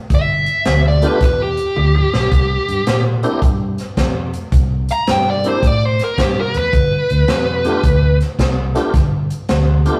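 Electric blues shuffle with a rollicking, laid-back swing, caught in a rough rehearsal-room recording with small room ambience and light reverb, cut from a longer piece. A dark, smooth lead guitar, overdriven and picked, sits up front and solos from the start until about 8.2 seconds. Beneath it, a vintage muted fingered electric bass gives a round, foam-muted, punchy low end, while a big-band drum kit swings with an airy, polished sound, a high-tuned snare and a punchy kick, dropping in a fill between 1.8 and 2.3 seconds. A tonewheel organ joins at 1.0 seconds as a full accompaniment, lightly overdriven and colored by chorus vibrato and a slow rotary speaker. The harmony moves from G9 to C9 and back to G9.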